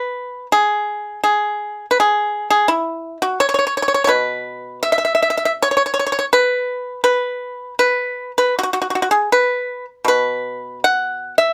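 A solo pipa opens the recording and carries it alone for its full 11.5 seconds, a short cut from a longer piece of Chinese traditional music for plucked strings. The mood is flowing and pastoral, set at about 81 BPM in 4/4, though the pulse is loose and rubato, with beats that stretch and give. Played with fingerpicks, the acoustic pipa has a mellow yet percussive voice, sitting up front in the mix with a dry, close presence. Its line ranges from B2 up to F#5. A light reverb adds a touch of air around the performance.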